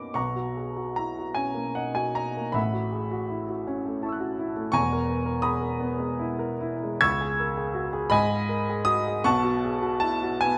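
A warm, present grand piano plays solo in this serene, luminous impressionist classical excerpt in B major, its long sustain ringing through a moderate recital hall reverb from deep E1 to bright G#6 at a rubato 6/8 pulse of about 46-58 BPM, drifting through lush chords such as Bmaj9, A69 and Emaj7#11 before settling on B7sus2 at 9.2 seconds, captured up front by close, detailed microphones.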